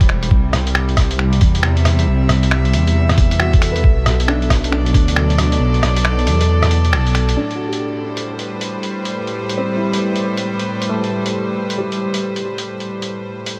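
Nocturnal and wistful, this swung future garage fragment sets biting, earthy chamber strings with 12-bit sampler grit and sidechain pumping over a menacing, saturated detuned saw bass that drops out at 7.4 seconds, a thumpy, muffled, pitched-down kick that stops at 5.1 seconds, and a tape-warm lo-fi kit of finger snaps, hi-hat and rim click, while a soft, intimate felt-muted upright piano with audible action noise, low-pass filtering, digital delay and pumping takes a filter sweep from 7.4 seconds, all under light reverb, vinyl crackle and lossy compression artefacts.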